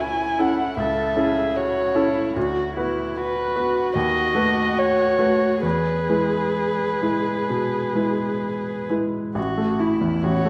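A dark, woody violin sings a tender, lyrical melody from the start of this slow, rubato classical piano-trio movement in A major at 62-78 BPM, its close sul tasto vibrato up front, while a warm cello traces a soft-attacked, intimate second line and a bright, polished grand piano gives brilliant short-sustained accompaniment, all in a wet scoring-stage reverb with a dark production, the harmony moving through A/C#, Bm/D, B7/D# and E before settling on A at 9.4 seconds in this fragment cut from a longer piece.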